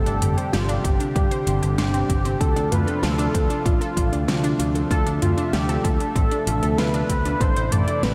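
A dreamy, reverb-soaked hall sound frames this moody, nocturnal synthwave excerpt, where a thick, detuned unison lead sings the melody with vibrato, delay and shimmer reverb over a warm sawtooth pad that pumps in the background and round, chorused pluck arpeggios trailing delay. Underneath, a bright picked electric bass with an envelope filter and tube saturation pushes forward, joined by an overdriven pop drum kit with a fat snare, metallic hats and toms, while a punchy, overdriven electronic kick arrives at 0.8 seconds. The harmony drifts from Gsus4 to Dm7 and finally touches Am before the fragment cuts off.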